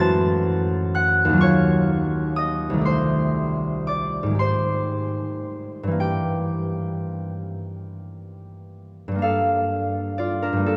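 Wistful and mysterious, this brief classical passage for solo concert harp is cut from a longer piece and drifts by in a slow, rubato 6/8 at roughly 36-43 BPM, counted in dotted quarters. The harp plays alone from start to finish, spanning C2 to A6, its fingerpicked strings sounding warm, ringing and up front. Rich, extended harmonies glide past, moving from F#m9 through Ebm9, Cm6, Abmaj7 and Gm6 before settling onto Gm9 as a new section opens at 9.2 seconds. A long cathedral reverb of about 5.3 seconds, captured in a church or concert hall, lets each chord bloom and linger in the space.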